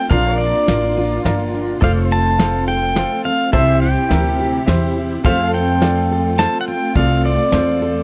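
Fingerpicked pedal steel carries an up-front, clean melody with sliding volume swells over a twangy second steel with lush chorus, a full-bodied jumbo acoustic guitar, a growly pizzicato upright bass, brushed drums, a brilliant grand piano with audible action noise, and a dark bowed string section, in a heartfelt, nostalgic honky-tonk waltz excerpt with a dry, close 1970s-style studio sound.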